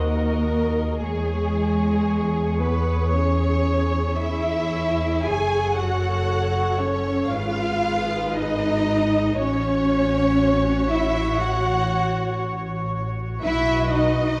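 A rich, focused double bass section sits up front beneath woody, distant cellos, dark violas and a smooth-topped second violin line in the background, while the first violins carry a lush, expressive melody with vibrato through this melancholic, elegiac 14.4-second passage from a slow romantic movement for string orchestra, played with rubato around 58 BPM and moving from C-sharp minor toward F-sharp minor and a closing B chord, all bathed in moderate scoring-stage reverb.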